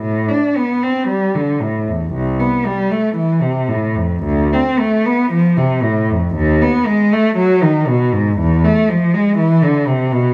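A single bowed cello sings a flowing, solemn baroque-style suite movement in A minor at a rubato 53-60 BPM in 4/4. Its warm tone, expressive vibrato and gliding portamento range from C2 to D4 across this 10.3-second fragment of a longer piece, tuned slightly low to A4 = 437 Hz and set in a moderate recital-hall reverb.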